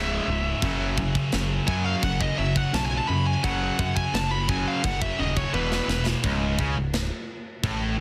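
A straight, steady 4/4 pulse drives this heavy, aggressive metal passage, cut from a longer piece. A dark, high-gain lead guitar carries the solo melody from the start until 6.0 seconds, over power chords moving from C#5 to F#5 and then E5. Underneath, three distorted electric guitars play the low riff: two sit in the background with a warm, picked tone, one overdriven and one distorted, while the third is a tight, bright, double-tracked guitar. A growling picked electric bass, overdriven and up front, anchors the bottom end. The acoustic metal drum kit enters at 0.6 seconds with a tight kick, medium-tuned snare, bright crash cymbals and toms in a big-room sound, and plays a fill at 5.5 seconds. Light reverb surrounds a dense, heavily limited modern master, and the final stretch drops the chords as the riff continues.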